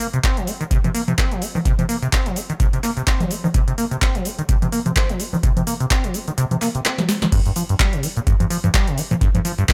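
A swung 4/4 groove at 127 BPM drives this hypnotic, raw acid house fragment, with a deep, tape-warm electronic kick joining at 0.2 s over a booming, overdriven analog drum machine, itself placed up front, of crisp snare, metallic hats, handclaps, congas, shaker and crash cymbal. A squelchy, resonant sawtooth acid bass riff with a filter sweep, tube saturation, lush chorus, sidechain pumping and digital delay cuts through with a fast, decaying attack. The kick drops out at 6.4 s as a drum fill leads into the drop at 7.3 s, everything sitting in a digital ambience.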